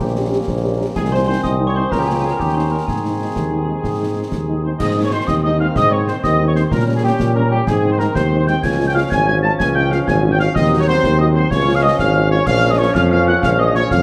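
An up-front tuba anchors this festive, rousing military-style march for wind band in a straight 6/8, heard as an excerpt from a longer piece. Above it, a mellow trumpet section carries the melody with light vibrato and a soft attack. A clear, distant woodwind section adds a second line in the background, while a trombone section holds roomy sustained chords and a dark, very quiet French horn section fills in accompaniment. Concert snare drum, bass drum and dark-toned clash cymbals sit close and dry from 0.5 seconds. A ringing, bell-like glockenspiel struck with soft plastic mallets adds a vintage sparkle until 4.6 seconds, when a pure, woody piccolo takes over the second line with expressive tongued phrasing and rolled-off highs. The whole band sits in a large, wet studio reverb with a dark, warm production.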